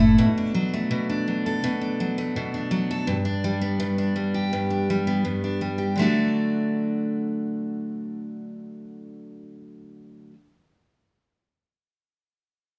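A picked steel-string acoustic guitar opens this sunny, carefree pop excerpt in D major, its full-bodied jumbo tone sitting up front at an easy 83 BPM in a straight 4/4. The guitar moves from Bm7 to G at 3.1 seconds before settling on D as a new section begins at 6.0 seconds, ranging from G2 to A4. A wet, large studio reverb with a 1.1-second decay surrounds the live, single-room performance, lending the short cut from a longer piece an open, airy feel.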